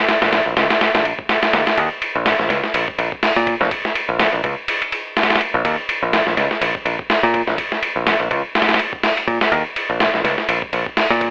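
A swung 4/4 breakbeat groove at 124 BPM drives this raw, energetic fragment cut from a longer piece, with a dusty sampler-style soul kit of kick, snare, hi-hat and ride entering at 0.1 s. The compressed, overdriven drums sound gritty and up front, with a thumpy kick and a medium-tuned snare, while a picked electric bass joins at 0.2 s, warm and direct in the range from Bb1 to Bb2. Light reverb and a telephone-style sound give the whole mix a lo-fi edge.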